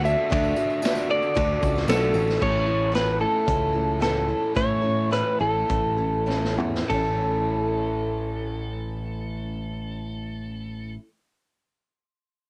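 Jangly and warm, this folk rock and heartland rock excerpt in A major moves at 96-115 BPM and slows partway through, its compressed, slightly broken-up slide guitar carrying the melody up front over a round, punchy picked bass, a bright double-tracked overdriven guitar riff and a picked acoustic archtop guitar in the background, while a jingly tambourine drops out at 2.3 seconds and a vintage drum kit with dark cymbals plays a fill at 6.3 seconds before stopping at 7.0 seconds, all captured as a home cassette recording with light reverb.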